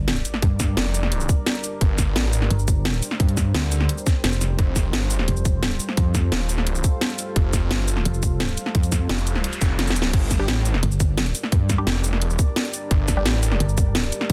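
A brooding, warbling pad with sidechain pumping and a mellow pulsing wobble bass open this tense, aggressive slice of dark technical drum and bass alongside a background impact, before a tight overdriven kick, an up-front drum kit of cracking snare, bright hi-hats, cabasa and crash, and a growling, distorted saw bass with a moving notch drive hard through the dense, heavily limited mix, while a noise sweep at 9.2 seconds and a drum fill near 9.8 seconds lead into a muted, phased dub chord stab with tape echo at 10.4 seconds.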